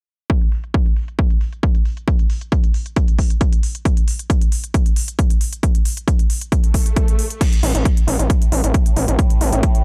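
A straight 4/4 pulse at 135 BPM drives this relentless, intense peak-time techno excerpt, built on a heavy, overdriven electronic kick up front and a layered drum kit whose smooth hats and crash cymbals pump under sidechain and sit behind a low-pass filter. An electronic swell appears at 6.7 s. A saturated, aggressive sawtooth bass with oscillator sync, ring modulation and a filter pluck enters at 7.6 s, then a tense, swarming drone of detuned unison voices with granular texture and its own reverb emerges in the background at 8.1 s, all captured in a dry hardware recording.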